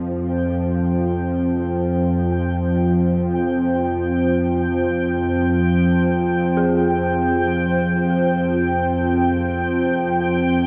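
Dark ambient drone in free time, dark and ominous: a tense, string-like bowed drone with vibrato and a deep, moody analog pad with chorus and phaser sit up front, while a bubbling stepped-filter texture with resonant random filter steps and a very quiet, eerie, inharmonic FM bell playing arpeggios hover within a huge, wet reverb throughout this 10.7-second excerpt cut from a longer piece.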